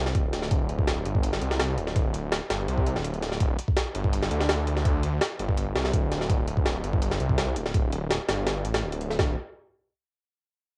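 A homespun cassette recording with light reverb gives this drum and bass cut, taken from a longer piece, an atmospheric air. It opens directly in a drop that runs to 9.2 seconds, carrying a frenetic jungle energy in a straight 4/4. Up front, a jungle sampler-style drum kit delivers a thumpy kick, a high-tuned snare and hi-hat, its pitched-up, compressed samples sounding gritty and tape-warm, as if re-recorded in a large room. Beneath it, a thick, menacing detuned saw bass with a fast attack holds long, beating tones in the low register, sitting just as close and pushed into tube saturation. The drums stop at 9.3 seconds and the bass at 9.4 seconds, closing on a brief final passage.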